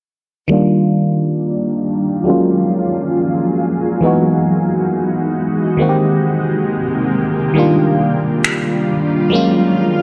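A glassy, bell-like FM electric piano with chorus and phaser opens at 0.5 s on a dreamy, romantic contemporary R&B passage at 68 BPM with a swung 16th feel in Eb major, joined at 1.2 s by a cloudy, detuned granular pad bathed in its own reverb, the two moving through lush major-ninth chords from Ebmaj9 to Gbmaj9, Emaj9 and Abmaj9 under a filter sweep and light room reverb, before tape-warm electronic finger snaps pop up front briefly at 8.4 s in this fragment of a longer piece.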